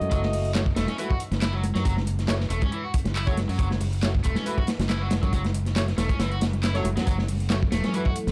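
A swung breakbeat groove at 138 BPM in 4/4 drives this swaggering, funky excerpt in F# dorian, built on a single F#m7 chord. A crunchy acoustic breakbeat kit sits up front with a tight kick, medium-tuned snare and hi-hat, its saturated, rolled-off top giving it gritty heft. A layered electronic kit adds overdriven handclaps and metallic hats, while very quiet congas with a thin skin ring from a live room. A growly fingered electric bass, bright and direct with tube saturation, anchors the low end. Punchy horn stabs with light vibrato run through a filter sweep and tape echo, and an overdriven picked guitar riff carries lo-fi sampler grit. At 7.4 seconds a deep, moody analog pad of detuned sawtooth and triangle tones with a sub octave swells in under chorus and sidechain pumping, all framed by light reverb in a dark production.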